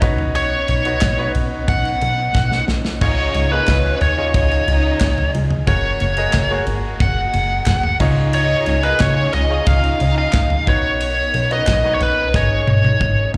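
Heard through a club PA with light reverb and a small-room ambience, this hopeful piano-driven pop excerpt sets a bright, woody upright piano with slapback echo against lush bowed strings, a punchy, funky analog bass up front and a tight, airy acoustic drum kit with handclaps and fills, while an overdriven, biting electric lead guitar carries the melody and a distant, expressive violin section adds a second line from 3.0 to 10.6 seconds.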